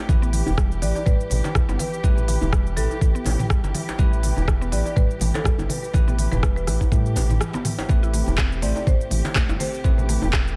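A knocking electronic kick sits up front in a swung afro house groove, joined by a smooth-hatted drum kit with handclaps, rim clicks, shaker and toms, plus softly handled, compressed congas and a medium-tuned djembe that enters at 0.5 seconds. Underneath, a round, deep analog bass holds sustained, dark low notes that pump against the kick. A veiled, con sordino string section supplies bowed chords with a soft attack and vibrato, while a bright, bell-like tine electric piano drops clean stabs that echo through a delay. Further back, a woody, detuned FM pluck runs chorused arpeggios, and from 0.8 seconds a mid-forward marimba with padauk bars carries the melody with delayed repeats. The mood is warm and driving, with a short break at 7.4 seconds before the harmony shifts from E minor to A minor ninth in this fragment of a longer track.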